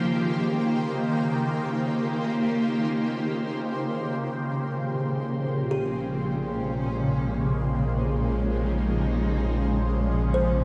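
A spacious concert-hall wash surrounds this serene ambient excerpt in Bb dorian at 52 BPM, where a shimmering, detuned pad with chorus and phaser holds sustained chords up front from the start, a dark bowed cello sings a vibrato-laden melody in the background through diffuse delay and fades in from 4.0 seconds, a round, deep analog bass enters at that same moment, and a woody, mellow kalimba adds soft arpeggios from 5.7 seconds as the harmony moves from Eb13 to Bbm9.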